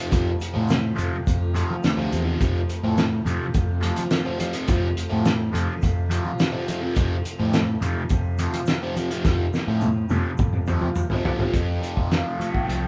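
A hypnotic, hazy psychedelic rock excerpt opens on a bright, double-tracked fuzz guitar riff with phaser, a shimmering, buzzing tanpura drone and a very quiet vintage string machine of violas, joined almost at once by growling overdriven fingered bass, a muffled, cloth-damped drum kit with a fat snare that plays a fill from 9.3 s, and a grainy tube shaker in the background, before an airy, hollow concert flute with vibrato enters at 12.1 s, the band playing live in one reverberant large studio room and captured on cassette tape.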